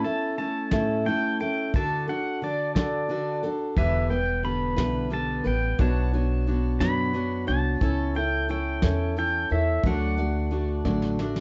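Wistful and melancholic, this slow acoustic folk fragment sways in 6/8 at 59 BPM, with a clean, compressed pedal steel guitar singing the melody through volume swells and slide over a full-bodied, up-front jumbo acoustic guitar (finger squeaks and all) and a dark, smooth brush kit with a fat snare and punchy kick, while a woody, thumpy pizzicato upright bass joins at 3.8 s and a brief drum fill arrives at 10.9 s, all bathed in light reverb and the worn, warbling pitch drift of old cassette tape.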